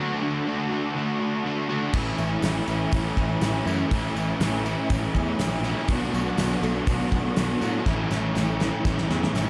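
In a straight 4/4 pulse, this blissful, hazy shoegaze and dream pop excerpt opens with three overdriven guitars playing a riff over a D chord. One electric guitar carries an analog chorus, a darker, scooped, double-tracked electric guitar sits very quiet beneath it, and a hollow-bodied semi-hollow guitar with reverse reverb hangs in the background. At 1.9 seconds the band arrives on A: a punchy fuzz bass, a shimmering, octave-doubled twelve-string acoustic playing soft arpeggios, and a polished gated 80s drum kit up front with a tight kick, a medium-tuned snare, hi-hat and bright crash. A jingly tambourine joins at 2.2 seconds, tucked far back in the mix. The harmony moves to Bm7 and returns to A, where a drum fill begins at 7.9 seconds and runs to the end of the clip. A moderate plate reverb soaks the whole mix in a dreamy glow.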